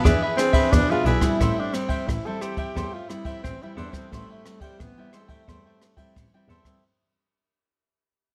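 Samba and choro at 88 BPM in A minor, this lively, sunny excerpt fades out throughout its 6.8 seconds as an up-front, mellow tenor saxophone solos with subtone, vibrato and scooped notes over crisp picked cavaquinho, woody fingerpicked nylon-string guitar, a distant bowed double bass with portamento, and a polished brush kit with a punchy kick and dark cymbals, all moving from E7 to Am7 in a dark production with moderate large studio reverb.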